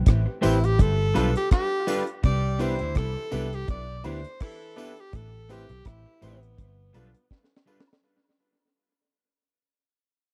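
Smooth and romantic, this short lovers rock reggae passage, cut from a longer piece, sits in an unhurried 4/4 with a swung sixteenth-note feel and fades out across its full eight seconds. A dark, round, foam-muted fingered electric bass sits up front with a deep, dry reggae drum kit built on a tight kick, high-tuned snare, rim click and hi-hat, its top rolled off. A clear, up-front tenor saxophone carries the melody with vibrato and tape echo, while a natural-sounding grand piano adds accompaniment and a clean, picked electric guitar plays dark stabs through analog chorus and tape echo. A very quiet, twangy, scooped electric guitar riff sits low beneath them, tambourine and woodblock tick along in the background, and a smooth-topped horn section with light vibrato adds a second line from 2.2 to 4.9 seconds. Chords move from Am7 to G7 and settle on Cmaj7 before returning to Am7 and G7, with a drum fill closing the passage from 7.3 seconds in a close, dry 1970s-style small-room sound.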